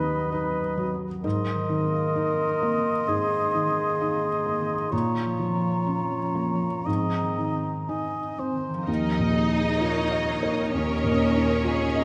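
Bathed in the wet reverb of a scoring stage, this sorrowful, bittersweet cinematic fragment of a longer piece unfolds with a rubato feel. An up-front, felt-muted upright piano with audible action noise and a ringing, fingerpicked concert harp in the background support secondary lines from a soft-attacked clarinet, a close-miked cor anglais and an airy, hollow concert flute. The woodwinds fall away by 8.9 seconds as lush bowed strings take over, with a smooth violin melody, focused violas, vibrato-rich cellos and background double basses, while a second, distant violin line joins at 10.7 seconds.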